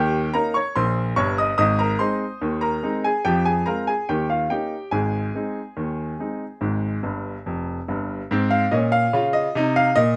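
An upright piano carries this playful, lively ragtime passage entirely on its own, its woody, vintage tone sitting up front in the mix. The playing keeps a straight feel in a two-beat metre at 72 BPM, with the harmony moving through Eb7, Ab and Fm before returning to Eb7 and Ab. Near the end of the opening strain, a piano fill from 7.0 to 8.3 seconds leads into a new section that carries on until the clip stops at 10.2 seconds. The recording has a clear, smooth sound with a moderate studio ambience around the instrument. This short passage is cut from a longer piece.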